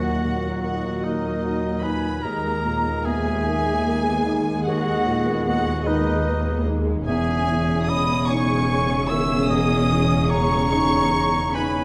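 Bittersweet and moving, this cinematic film-score passage drifts at a rubato 50 BPM in 6/8, in C# dorian, over chords moving from D#m to G#madd9/D# at 2.2 seconds and C#madd9/E at 7.1 seconds. An intimate chamber violin section carries the melody with light vibrato and a soft sul tasto touch, while a distant, pure silver flute, a close-miked solo oboe and a lush symphonic violin section in the background add second lines. A dark grand piano and an expressive viola section provide accompaniment, a mellow French horn section holds sustained chords, and rich cello and double bass sections anchor the bass, all in a moderate scoring-stage reverb with a dusky, warm production.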